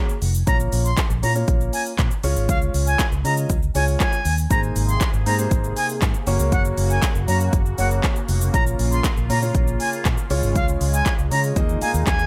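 A concert grand piano with a deep low end opens this summery, carefree dance-pop excerpt at 119 BPM, quickly joined by an overdriven deep house kit of deep kick, smooth hi-hats, handclaps and shaker sitting up front, a dark, round, foam-muted fingered electric bass, and a bright, reedy silver flute carrying the vibrato-laced melody through a delay, before a filtered, detuned supersaw swell with a soft attack and phaser drifts in at 4.5 seconds over chords moving from Bbm through Db, Abadd9 and Gb, with sidechain pumping on every part except the drums and a dry sound overall.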